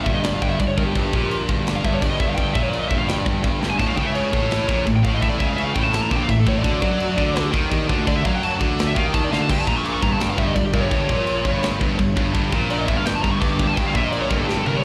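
A dark, high-gain lead guitar solo opens this epic, heavy metal excerpt over a tight, up-front distorted guitar riff and a growly, fuzz-laden picked bass, with slapback echo and delay trailing the lead. A tight acoustic drum kit with a rolled-off top drives the straight 4/4 feel on kick, snare, toms and crash, throwing in fills at 3.6 and 9.3 seconds. A scooped, bright second riff guitar joins in the background at 3.8 seconds as the harmony moves from G minor toward a diminished chord, all heard as a live gig through the venue's PA with a recital-hall reverb.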